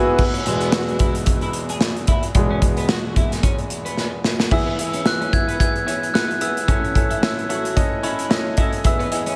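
A lightly swung sixteenth-note groove in 4/4 drives this uplifting, anthemic piano pop fragment, cut from a longer piece. An up-front grand piano with a brilliant, polished tone carries the accompaniment and takes a solo passage from the opening. A clean, compressed twelve-string electric guitar picks a riff in the background, treated with a lush chorus. A modern acoustic kit with a punchy kick, medium-tuned snare, hi-hat and crash sits forward in a pumping room sound, closing the first section with a fill at 4.0 seconds. At 4.5 seconds a glockenspiel played with soft plastic mallets enters with a high, bell-like, ringing melody, and the mix is dreamy and soaked in a moderate cathedral reverb.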